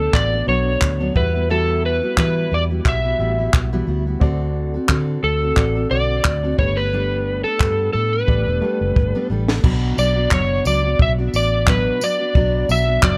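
Easy-going and carefree, this short excerpt from a longer acoustic pop piece moves at 88 BPM in 4/4 with a gentle sixteenth-note swing. An electric slide guitar carries the melody up front, its slightly broken-up tone played with fingerpicks and trailed by tape echo, while a full-bodied dreadnought steel-string acoustic guitar is fingerpicked underneath. A gritty, overdriven reed electric piano sits in the background through a combo amp with a fast tremolo, dropping out at 9.7 seconds. A vintage muted electric bass gives a round, foam-muted, amped low end up front, and a compact cocktail drum kit, with its high-tuned snare, punchy kick, crash cymbal, handclaps and tambourine, sounds dark and smooth with a rolled-off top in a small room. The harmony moves from D6 through Emadd9, D7 and Gadd9 before a drum fill from 8.3 seconds leads into a new section on Bm at 9.6 seconds, all in a dry, close sound with little reverb.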